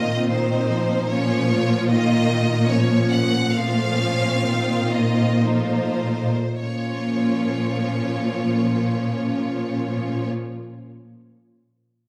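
Classical: a slow romantic orchestral movement in Bb minor and 3/4, yearning and melancholic, moving with rubato between 49 and 76 BPM and slowing down through the first 6.6 seconds of this short excerpt. A lush violin section carries the melody with focused vibrato, while a second, smooth-topped violin section plays a supporting line; the close viola section adds expressive portamento in the accompaniment, and the cellos play a soft-attacked Bb2 in the bass. A wet recital hall reverb surrounds the strings as the harmony moves between F7 over Bb and Bb minor.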